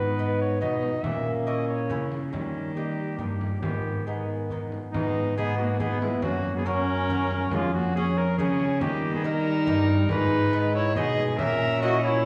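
Rustic and solemn, this renaissance-style consort dance in 3/4 at 140 BPM in G# minor, cut from a longer piece, sets a mellow cornet melody with light vibrato over a distant, reedy gut-string viola second line, a delicate fingerpicked lute on double strings, a warm, roomy trombone and a rich bowed cello bass sitting up front, while a deep frame drum in the background plays from 0.6 to 11.6 seconds, the whole consort heard from further back in a wet recital hall.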